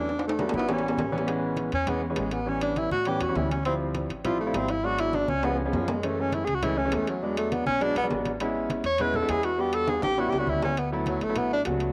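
This short excerpt from a longer piece carries the hazy character of a home cassette recording, bathed in a moderate spring reverb. It is sophisticated, danceable Afro-Cuban jazz in a straight four, moving through rich jazz harmony such as major ninth, eleventh and half-diminished chords. A breathy tenor saxophone sits up front with light vibrato and scooped notes, taking a smooth-topped solo from 1.3 s to the end, while a clear concert grand piano with deep bass supplies the accompaniment; both parts carry a cassette-tape tint. Underneath, a pizzicato upright bass on gut strings gives a woody, thumpy foundation. Close, dry metal-shell timbales ring out, and very quiet low-tuned congas with thick, damped skins add soft-handed color, with percussion fills at 5.1 s and 9.9 s.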